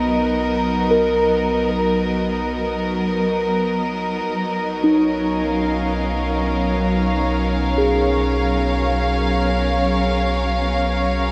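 Steeped in cathedral reverb and a cassette-tape haze, this weightless, luminous ambient excerpt sets an up-front, dark string section playing sustained chords with light vibrato and sul tasto softness over muted felt-like synth keys, whose arpeggios shimmer through chorus and diffuse delay, while a round analog bass fades in across the full 11.3 seconds and a tense, detuned bowed-like drone hovers very quietly beneath the shift from Bmaj7 to F#maj7/B.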